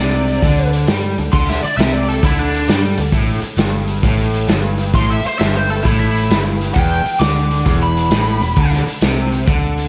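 A driving 4/4 groove at 132 BPM rolls on swung eighths, giving this short, raunchy cut of blues rock power trio with a southern rock streak a loose, swaggering feel, tuned slightly low to A4 = 438 Hz. The vintage drum kit comes in at 0.3 seconds and sits up front, its acoustic sound lo-fi and muffled with a punchy kick, a medium-tuned snare, hi-hat and a rolled-off top. Beneath it, a double-tracked, crunchy overdriven guitar picks the low riff, also up front, while a foam-muted fingered electric bass adds a dark, round, amped bottom. Over this, a lead guitar through a small cranked amp picks a gritty melody colored by wah, overdrive, slapback echo and tape echo before dropping out at 8.7 seconds. The harmony moves from Csus2 to A5 and E5 and back to Csus2, and a moderate, lush hall reverb gives the whole track a big arena sound.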